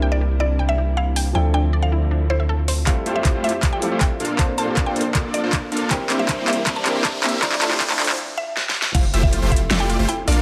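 Bright and lush, this future bass excerpt moves at 158 BPM in a half-time feel in F major, opening with a background grand piano carrying 12-bit sampler grit and dub echo, dark bowed strings, a woody mallet-like FM pluck melody with chorus, a punchy detuned unison pluck and a deep, mellow sine 808 bass, all pumping against the sidechain. At 2.9 seconds a knocking electronic kick and huge, detuned supersaw chords under a sweeping low-pass filter join the layered dubstep kit with its huge snare and metallic hats, driving a build-up full of drum fills, while a very quiet riser creeps in. After a short break the drop lands at 8.9 seconds on Fmaj9 with an impact as the bass and unison pluck return, all set in a moderate digital room reverb.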